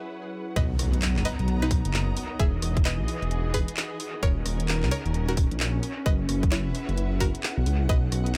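A swung two-step garage groove at 131 BPM in B major drops in at 0.6 s, where a tight, layered electronic kick and a garage kit of handclaps, rim clicks and warm hats with dub echo join a deep, rumbling detuned saw bass that sits up front with tube saturation, while a very quiet electronic impact marks the drop. Over the chords moving from Bmaj7 through Emaj9 and D#m7 to F#7sus4, a twangy, string-like resonator pluck carries the melody with chorus and tape echo, an ethereal, airy pad breathes sustained chords in the background with sidechain pumping, and a distant, woody symphonic string section adds lush bowed texture with vibrato. The mood is soulful and sunny in this echo-heavy, dry-roomed fragment of a longer piece, which runs to 8.4 s.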